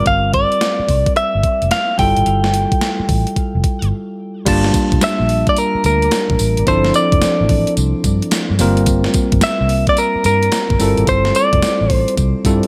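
New jack swing R&B with a punchy, confident strut and a swung sixteenth-note feel, taken from a longer piece. A gated 80s digital drum machine sits up front with a thumpy kick, an overdriven, sampler-style snare caught in gated reverb, plus hi-hat, tambourine and crash cymbal. Underneath, a vintage fingered electric bass plays in a dark, round, foam-muted register, while a bell-like tine electric piano adds bright, clean chords of suspended and ninth colour. The melody comes from a direct-recorded electric guitar, picked and compressed, its warm, clean tone carried by tape echo and placed forward in the mix. After a brief break at 3.9 seconds, the arrangement moves into a new section at 4.5 seconds, with the whole track sitting in light reverb.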